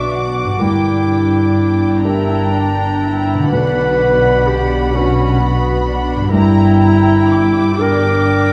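A slow, rubato lilt in 6/8 carries this short, bittersweet passage cut from a longer orchestral film score, giving it a moving, unhurried sway. Muted violins carry the veiled melody up high with vibrato, while a lush second violin line with a soft attack moves beneath them. Alongside them, a warm, roomy solo clarinet sits up front with a second line of its own. A dark, mellow grand piano provides the accompaniment, joined by distant, con sordino violas and a very quiet, ringing fingerpicked harp playing arpeggios. Muted cellos in the background and smooth-topped double basses hold down the bass, all within a moderate scoring-stage reverb and a layer of vinyl crackle across the full 8.5 seconds.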